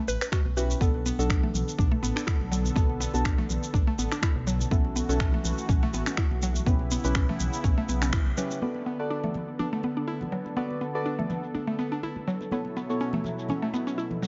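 A swung groove at the heart of this earthy, spiritual afro house excerpt pairs an up-front, deep electronic kick and a rumbling, detuned saw bass (both stopping near 8.2 seconds) with low-passed electronic shaker and finger snaps, soft-handed congas in the background, woody mallet-like synth pluck arpeggios and dark chord stabs pumping under dub echo, and a smooth analog pad with chorus and tremolo entering at 0.8 seconds, while a band accent at 8.1 seconds gives way to a filter sweep on the drums from 8.6 seconds over shifting seventh chords and a faint mains hum.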